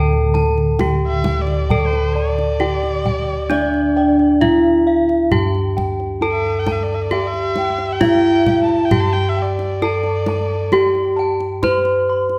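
This serene, shimmering Javanese gamelan excerpt opens at 0.0 seconds with a bright, ringing bronze metallophone melody struck with horn mallets and set up front, over a round, mellow bass line from bossed gongs played with padded beaters. Behind them, a second metallophone and a second set of bossed gongs weave arpeggios in the background, the metallophone's paired tuning creating shimmering beats and both carrying a boxy small-room colour. The kendang adds tight, close and dry percussion, and the pulse sits at a steady 66 BPM in a straight 4/4. At 1.1 seconds a single erhu enters with an intimate second line, its warm bowed tone marked by vibrato, portamento and an airy bow, and it drops out of the texture at 11.3 seconds. A moderate recital hall reverb gives the bronze instruments a soft halo as the passage holds its calm, glowing mood.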